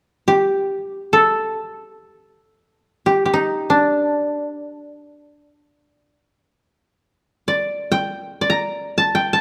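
A solo koto, played with fingerpicks, carries the melody from 0.3 seconds to the close at 9.4 seconds, its woody, mellow tone sitting up front and dry in the mix. This is Japanese traditional music in free time, moving through the G hirajoshi scale across a range from D4 to Bb5. The mood is meditative and still. Around the instrument, a moderate recital hall reverb with a 1.6-second decay adds a sense of space. The brief passage is cut from a longer piece and forms a single unbroken section.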